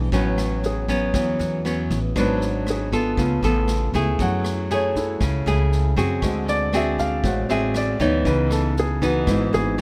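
A sunny, romantic bossa nova fragment cut from a longer piece opens on an up-front, fingerpicked nylon-string guitar with audible finger squeak, a woody, thumpy pizzicato upright bass and an intimate grand piano whose action noise can be heard as it solos throughout, while a quieter big-band drum kit with a boomy kick, rim clicks and a medium-tuned snare enters at 0.1 seconds, all captured closely and in fine detail with little reverb over chords such as A69, F#m9 and D7#11.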